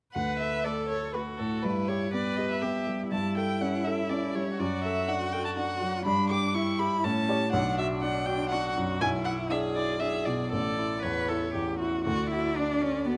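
Violin and cello enter together at 0.1 s, and the piano joins them a moment later in this graceful, lively excerpt of a quick classical-period piano trio movement in D major and 3/4 at 122 BPM. The single bowed violin carries the melody with a rich, smooth, even vibrato tone up front, while the cello sings a close, expressive second line with a soft attack and portamento, and the baby grand's open, warm accompaniment rings with long sustain. The harmony travels through B minor, E7 and A before settling back on D at 12.1 s, all captured by close, detailed microphones in a moderate recital-hall reverb.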